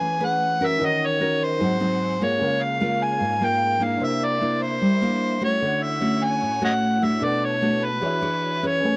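Recorded close and in fine detail with very little reverb, this relaxed, romantic bossa nova fragment is cut from a longer piece and runs for about nine seconds. An amplified, overdriven harmonica carries the melody up front in a gritty jazz style, with a soft attack, vibrato, tongue slaps and scooped notes. Beside it, a full-bodied nylon-string guitar fingerpicks the accompaniment with a deep classical tone. A warm baby grand piano sits in the background, and a bowed symphonic string section adds lush, expressive sustained chords with vibrato and a gentle onset. The harmony moves from Amaj9 through D#m7, G#7 and C#6, then on to C9, Dmaj7 and Bm7 before landing on E13.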